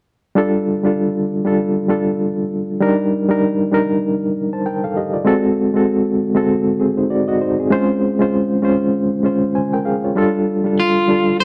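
Soul groove at 98 BPM in 4/4 with a gentle sixteenth-note swing, sitting in F mixolydian and carrying a warm, smooth mood through this short cut from a longer piece. A reed electric piano carries the accompaniment from 0.4 seconds, its reedy, worn tone slightly out of tune and shimmering with a fast tremolo through its built-in speakers, placed up front. The harmony moves from F69 through Ebmaj7, Ab7b9 and Dbmaj7 before returning to F69 at 10.2 seconds, where a second section begins. Just after, at 10.8 seconds, an electric guitar at the edge of break-up steps in with a brief melodic phrase, fingered and twangy with a slightly gritty edge, also sitting close in the mix. The dry, close sound with little reverb gives it the intimate feel of a 1970s studio.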